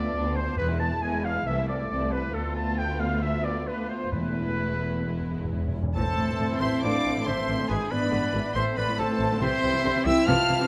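A moderate concert hall reverb gives this fast, dramatic romantic movement for symphony orchestra a spacious, restless sound, heard in a brief cut from a longer piece in A minor at 138 BPM in 4/4 with a rubato feel. A lush, distant violin section carries the melody with smooth vibrato, while a second, very quiet violin section adds a focused counter-line beneath it. A warm oboe with light vibrato and a very quiet, clear clarinet also weave second lines, the clarinet dropping out at 5.7 seconds, shortly before a silvery, airy concert flute with a crisp attack takes up a line from 6.0 seconds. Shadowy violas fill in the accompaniment, a dusky French horn section holds sustained chords, and a roomy, clear trumpet punctuates with stabs. Expressive cellos and a smooth, even double bass section anchor the low end, and close, dry timpani strike on E from 0.6 seconds, returning later with a fill that drives into the second section. 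The harmony moves through diminished and half-diminished chords toward E before settling on A minor, E7 and C.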